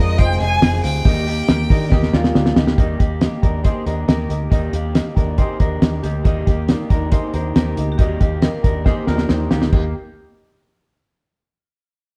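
A thuddy, cloth-damped drum kit sits up front in a moderate stone room as this youthful, bright jangly indie pop excerpt moves at 138 BPM in Eb major, with a distant bowed violin carrying the melody for the first 2.1 seconds, a metallic hard-mallet vibraphone ringing a second line in the background, a worn, slightly detuned upright piano, two slightly broken-up electric guitars through a small old amp playing accompaniment and arpeggios, and a round, foam-muted electric bass underneath, with drum fills at 1.9 and 8.9 seconds as the chords move from Fm7 to Eb.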